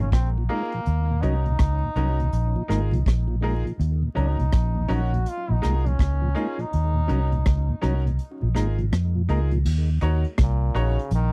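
Serious and laid-back, this short roots reggae cut rides a swung 16th-note feel over a two-chord sway between Bb7sus4 and Ebm7. Up front, the dark, round, foam-muted electric bass and a punchy brush kit with dark cymbals, rim click and hi-hat carry the groove, and the kick drops out between 8.2 and 9.6 seconds. A smooth tonewheel organ with key click, chorus vibrato and a slow rotary speaker fills the middle until 9.6 seconds, while a bright, worn baby grand adds intimate stabs with audible action noise. Over the top, a brilliant, forceful trombone carries the melody from a distance, with light vibrato and tape echo giving it a roomy cast. The sound is dry and close in a 1970s studio manner, dusted with vinyl crackle.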